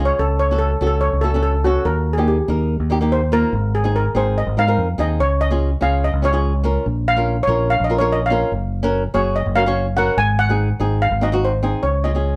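A shimmering, metallic lead steel pan, struck with medium rubber sticks and heard dry and up front, takes a solo from the start to 11.8 seconds over a dark, fingerpicked flamenco guitar with audible finger squeak and a punchy, direct-and-amped fingered electric bass in this sunny, bouncy calypso excerpt at 144 BPM in Db major, played live by a band in one room with moderate studio ambience.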